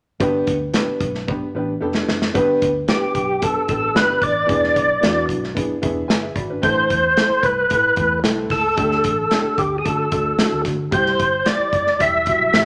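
A straight 4/4 groove from an up-front acoustic drum kit with a punchy kick, a fill at 1.3 seconds, drives this uplifting 1960s-style soul cut, with a dark, round, foam-muted electric bass holding down the low end and a clear, woody, slightly detuned upright piano comping through changes that move from G to E7, Am, Dsus4, D and C. At 2.9 seconds a fat, lightly overdriven tonewheel organ takes the melody, its third-harmonic percussion, key click, chorus vibrato and slow rotary speaker sitting at the front of the mix, while the boxy piano adds a short fill at 5.6 seconds. A large studio reverb gives the whole passage a roomy, live feel.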